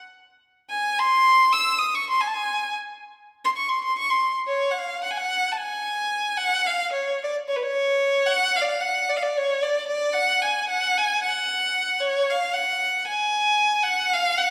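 In free time that keeps speeding up, this fiery, virtuosic Balkan folk fragment is carried by a single bowed violin entering at 0.7 seconds and playing through to 14.5 seconds. The solo line sits up front with a clear, focused tone and vibrato, reaching from B4 up to E6. A wet recital hall reverb with a 1.6-second decay surrounds the playing, and the passage is cut from a longer piece.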